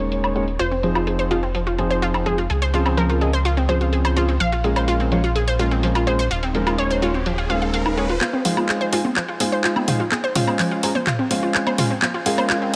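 Opening on a lush, detuned unison pluck melody over dark, mellow baby grand piano stabs with dub echo, a round, deep analog bass and a house kit of handclaps, tape-warm hats and woodblock, this expansive, emotional progressive house clip in F minor at 126 BPM adds a bright, chorused analog pluck arpeggio at 0.6 seconds, then a background riser from 6.4 seconds that gives way at 8.2 seconds to a build-up and drum fill of dry, overdriven electronic congas and toms, moving from Eb7sus4 through Fm7, Dbmaj7, Bbm7 and Eb7sus4 before returning to Fm7 and Dbmaj7, all in a light digital ambience.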